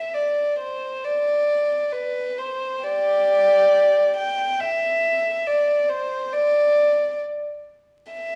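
Vinyl crackle and a small room's ambience sit beneath a reverberant recital-hall wash in this brief fragment of a lyrical, nostalgic classical piece, where a lone warm violin plays close and intimate, sul tasto with an airy bow, soft attacks and light vibrato, moving in free, rubato triple time between G4 and G5 across its 8.4 seconds.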